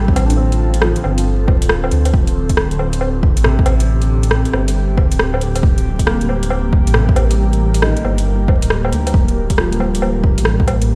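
A dark, detuned saw bass sits up front with a deep, rumbling, beating tone that pumps against the kick, anchoring this rainy, nocturnal future garage excerpt. The punchy electronic kick arrives at 0.1 s, overdriven and touched with studio reverb, and a deep house kit of metallic hi-hats, rim clicks and woodblock joins at 0.2 s with the same grit and gloss, all riding a swung sixteenth-note feel. Above them, an airy, breathy pad holds slow-blooming chords colored by chorus, phaser and vintage 12-bit sampler crunch, breathing in time with the sidechain. Tucked in the background, a felt-muted upright piano adds mellow, intimate accompaniment through digital delay, its short notes pumping gently with the groove. The harmony moves from Dm7 to Eb/D at 5.6 s, and the whole mix sounds as if played on a big sound system in a bare stone room, dusted with vinyl crackle.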